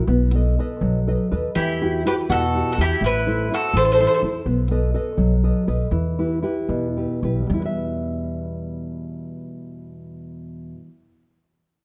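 A thumb-plucked nylon-string guitar with a deep classical tone and a dark, woody pizzicato upright bass open this wistful, romantic Italian serenade excerpt in 6/8, moving at 72-84 BPM in E harmonic minor, with a short guitar fill leading toward the chord change. From 1.6 to 4.2 seconds a picked bowl-back mandolin carries the melody up front with a slapback echo, while a second, brighter mandolin plays a quieter supporting line beneath it over changes from B7 through Emadd9 and Am. From 4.5 seconds the tempo slows as the guitar and growly bass carry the harmony back to B7 and then Em, all set in a moderate recital-hall reverb captured with close, detailed microphones.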